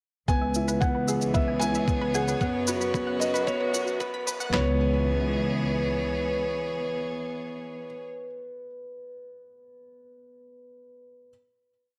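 A muffled, pitched-down sampler-style drum kit thumps out a four-on-the-floor kick with snare and handclaps, joined by a restrained, tape-warm shaker pulse, as this melancholic, intimate piano-and-strings electronica piece builds through a filter sweep on a bright, chorused analog pluck whose 5-step arpeggio drifts against the bar. A woody, slightly detuned upright piano repeats an 8-step arpeggiated riff up front, while a soft, felt-muted upright piano with audible action noise sings mellow arch-shaped phrases over a distant string quartet's slowly shifting bowed chords and an earthy, biting double bass section holding the root with sidechain pumping. The music settles onto a final chord at 4.5 s, the beat and pluck falling away moments later, and the piano riff rings on in the echo-chamber reverb until 11.3 s.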